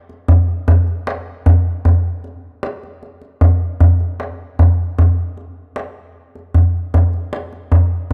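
A straight 4/4 pulse carries this festive, passionate Persian excerpt, where a solo tombak, deep and up front in a small room, plays from 0.1 to 8.1 seconds through two sections, captured with close, detailed microphones and little reverb.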